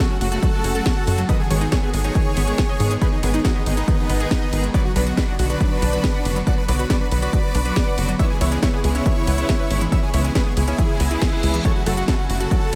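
A straight pulse from a punchy, up-front electronic kick and a techno kit of cracking snare, smooth hi-hats and ride drives this emotional, bittersweet uplifting trance excerpt, where a tight sequencer bass, a round, warbling analog pluck arpeggio with chorus and tape echo, and a rich, biting string section all pump under sidechain beneath a huge, euphoric supersaw lead bathed in diffuse ambient delay, with a very quiet reverse cymbal entering at 11.1 seconds before the chords return home to F#m.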